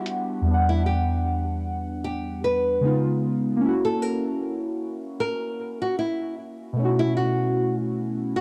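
Hazy, melancholic hip hop at 76 BPM in E dorian, lightly swung, with a nylon-string guitar carrying a small, fingerpicked melody through analog delay over warbly, detuned lo-fi synth keys that blend triangle and sawtooth tones with chorus, phaser, a filter sweep and cassette tape wobble. The keys sound mellow and nostalgic, with a fast attack and decaying notes, while the up-front acoustic guitar adds a warm touch as the chords move from Em7 through C#7 and F#7 to B7sus4. The dry, gritty recording carries light reverb and a digital ambience, and this short piece is cut from a longer track.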